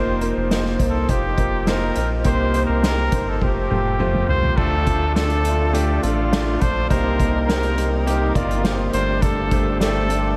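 A straight 4/4 pulse at 103 BPM drives this earnest, dramatic piano-driven pop excerpt, built on a bright grand piano with audible action noise, a deep, round analog bass and a distant, roomy drum kit struck with soft mallets, which plays a fill from 3.4 to 4.6 seconds. Up front, a trumpet with vibrato and a smooth top carries the melody through tape echo, while a lightly overdriven tonewheel organ enters very quietly at 4.6 seconds with sustained chords. The mix is soaked in a huge, dreamy reverb.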